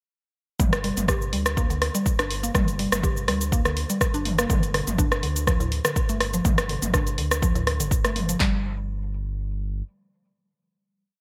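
Hypnotic and driving, this short afro house piece in G minor moves at 123 BPM with a light 16th-note swing, its drop running from 0.6 to 8.4 seconds before a final chord rings out to 11.2 seconds. A deep, sharp afro-pop kit pounds a four-on-the-floor kick under snare and handclaps, while a dark, layered deep house kit adds closed and half-open hats, cabasa, rim clicks and low toms with gated reverb. A round analog bass plays a syncopated, tube-saturated riff and sustains to 9.8 seconds, and a woody, mallet-like FM pluck cycles a 16-step arpeggio with subtle chorus and delay, both pumping against the kick inside a bright 1980s-style digital sound with light reverb.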